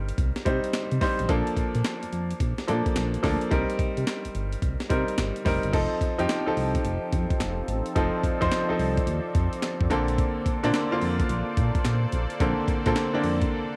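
Confident and bouncy, this cut from a longer new jack swing R&B piece moves at 108 BPM with a swung sixteenth feel, carried by a bright, up-front grand piano with a cassette-tape tint over a smooth, dark sawtooth synth bass that glides between notes. A gritty, compressed breakbeat sampler-style kit with a thumpy kick, handclaps, hi-hat, snare and crash cymbal punches through a home cassette recording with light reverb, as the chords move from Cm7 and Bbmaj7 to F7 and Bbmaj9. At 5.7 seconds an airy, detuned pad with chorus and a filter swell enters in the background, and the drums break at 13.5 seconds.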